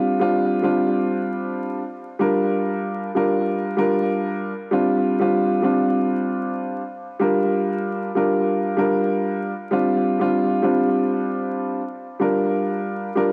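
Hip hop in G minor at 96 BPM, this short piece cut from a longer work carries a reflective yet tough mood, with a 16th-note swing of 57% giving the 4/4 pulse a loose sway. A dark upright piano plays alone for the full 13.3 seconds, staying between G3 and Bb4 and sitting up front in the mix. Its tone is woody and mellow, slightly detuned, with long sustain, and high-pass and low-pass filtering narrow its body while a dub echo trails each phrase. The harmony moves between Dm7/G and Gm7, with a brief opening passage giving way at 2.2 seconds to a longer stretch that keeps cycling through those two chords. Light reverb and small room ambience frame the piano, and vinyl crackle adds a dusty surface to an echo-heavy mix.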